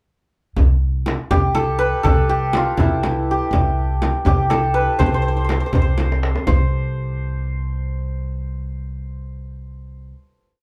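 This short Persian modal ensemble piece opens at 0.6 s with upright bass, frame drum and tombak together in a festive yet stately 6/8. The pizzicato bass, strung with steel, sits up front with a woody, growly darkness, and it plays on the low drum strokes. The tombak, played with soft hands, has a vintage, band-limited tone, while the large frame drum, struck with hard hands, sounds deep in a small room; both drums play a pattern of low and high strokes. At 1.3 s the hammered santur joins up front, shimmering and ringing as it carries a modal melody with ornaments. A drum fill arrives at 6.0 s, the drums fall away by 6.7 s, and a final note rings from santur and bass as the piece closes. The ensemble plays live in one room, with moderate studio ambience around it.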